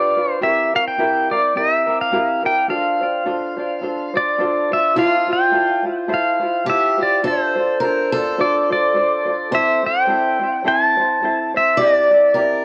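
A clean, up-front electric pedal steel guitar carries the melody from the start, played with fingerpicks and slide, with volume swells, compression and analog delay, over a light, thumb-plucked tenor ukulele in this relaxed, sunny Hawaiian excerpt with a gentle swing. At 5.0 seconds a boxy, parlour-style steel-string acoustic guitar with fresh strings enters, picking a second line as the harmony moves from C7 and F6 into Fmaj7, Dm7, Am and Cadd9. The excerpt has a homemade cassette character, softened by a moderate spring reverb.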